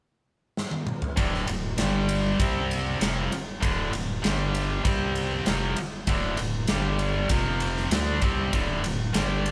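Hard rock at 98 BPM in D minor, heavy and menacing, this excerpt opens with a huge arena drum kit that enters at 0.6 seconds with a fill, its punchy kick, medium-tuned snare, toms, bright cymbals and ride sitting up front in a pumping hall sound. At 1.2 seconds a double-tracked, high-gain electric guitar joins with a picked, distorted riff, alongside a thick, growling FM bass with a fast attack and sustained notes, moving through D5, G5, C5 and D minor before closing on F5 and D5. The band plays live together in one room with moderate studio reverb.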